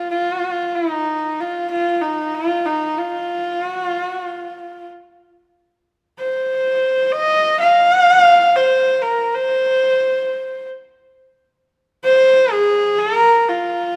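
Mongolian traditional music unfolds here in free time, carrying a windswept, solemn mood through a short passage cut from a longer piece. A single bowed horsehead fiddle plays solo for the full 14.0 seconds, its horsehair strings giving a bright, biting, husky voice with an earthy grain. The player colors the line with light vibrato and portamento, moving between Eb4 and F5. The fiddle sits up front, surrounded by moderate recital hall reverb. The passage falls into two sections, with the second beginning at 5.5 seconds.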